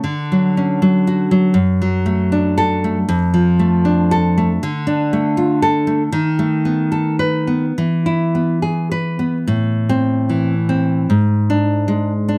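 Moving in a rubato 2/4 at around 68-80 BPM, this short passage cut from a longer romantic piece for solo classical guitar has a wistful, intimate mood, settling into A minor from 3.1 seconds after opening on Dmaj7 and passing through Dm and B7/D# to E before arriving at Am at 9.5 seconds. The fingerpicked nylon-string guitar sits up front with a bright, acoustic tone, ranging from F2 to B4 and tuned slightly high. The sound is dry and close, like a 1970s studio recording, with only a light touch of reverb.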